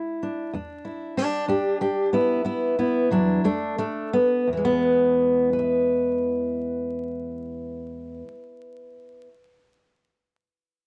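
A fingerpicked steel-string acoustic guitar with a dark, woody tone and old strings plays alone and up front in this rollicking, swaggering acoustic country blues, cut from a longer piece. It moves in a straight 12/8 at roughly 57-65 BPM in E mixolydian, easing its pace through the opening 4.5 seconds as it passes from E7 to E5 and on to F before settling back on E when the second section begins. Light reverb and a layer of vinyl crackle give the recording an aged, lived-in character.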